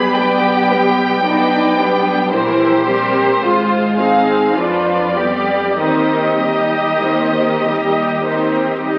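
Classical music for string orchestra, this slow romantic movement in C minor unfolds in 3/4 at 48-56 BPM with a rubato feel, its mood yearning and elegiac, and it is cut from a longer piece. A clear, up-front violin section carries the melody from C5 to B5 with smooth, even vibrato, while a second violin section adds a warm second line beneath it. The viola section supplies focused, bowed accompaniment, and the cello section, close and lush, holds a bass part pitched unusually high, between D4 and Ab4. A distant, expressive double bass section grounds the ensemble from Ab1 to F2. The harmony moves from G/B through C7/Bb, Fm/Ab and G7/F before settling on Cm/Eb at 5.8 seconds. The sound sits in a recital hall reverb with a 1.4 second decay and carries the crackle of a very old 78 rpm record, lending the whole passage a faded, wistful character.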